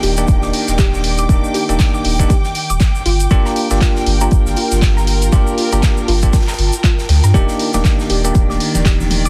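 A warbling, nostalgic tape-like pad holds sustained Ebmaj7 and Gm7 chords in G minor beneath a smooth, rich string section texture, while a soft, round pluck spins dub-echoed arpeggios in the background and a bell-like tine electric piano punctuates with bright stabs, the strings, pluck and electric piano breathing with sidechain pumping in this moody deep house excerpt at 119 BPM with a 16th-note swing. A deep, tube-saturated sub bass with octave sits up front beside an overdriven, roomy electronic kick that arrives at 0.3 s, with analog drum-machine claps and hats, a grainy tube shaker and a distant gated 80s kit filling in the groove. Congas played with hard hands slip in behind at 7.7 s, all within a dense, heavily limited modern master.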